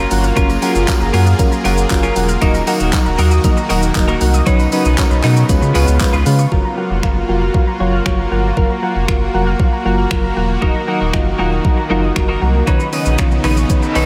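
A straight 117 BPM dance-pop groove in F# major is driven by an overdriven, layered pop kit with a knocking kick, warm hats, snaps, handclaps and shaker up front, while a deep, saturated sub bass and a lush detuned supersaw pad pump with the sidechain beneath mellow, chorused electric-piano-like synth keys and a glassy wavetable pluck arpeggiating through analog delay in the background. A bright, clean twelve-string electric guitar riff with lush chorus plays until 6.4 s and returns at 10.6 s, a very quiet jingly tambourine shimmers through the opening stretch, and the chords move through F#maj7, D#m, Badd9 and C#7. The carefree, upbeat mood is bathed in a huge ambient reverb that makes the mix dreamy, and a reverse cymbal rises at 13.9 s as this excerpt cuts off.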